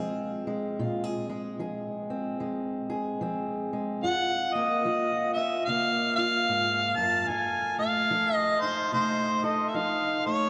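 A mellow, vintage-toned harmonica carries the melody in this mournful, smoky fragment of acoustic country blues, entering at 4.0 s and sitting up front with a soft attack, light vibrato and scooped notes in a jazz-inflected solo style. Beneath it, a fingerpicked steel-string parlour guitar plays accompaniment from the very start, its dark, boxy sound also placed close to the listener. The pace is slow, and the eighth notes carry a gentle swing in 4/4 time. The harmony moves from Bbsus2 to Gbmaj7 and then settles on F7 at 7.3 s, giving the passage an unresolved, aching pull. The whole performance hangs in a long cathedral-like reverb, as if played in a church or concert hall, lending the duo a haunting, spacious glow.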